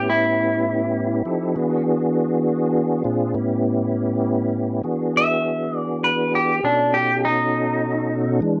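A dry, close 1970s-style studio sound with light reverb frames this brief blues fragment in 12/8 at a laid-back 67 BPM, rollicking in mood, in E mixolydian and tuned to A4 = 435 Hz. Up front, a bright, twangy electric guitar picks a clean melody between D4 and E5 with a warbly pitch drift. Beside it, a tonewheel organ holds sustained chords with key click, chorus vibrato and a slow rotary speaker through A9 and E9 to B9 at 6.6 seconds, the guitar stopping at 8.4 seconds and the organ at 8.6.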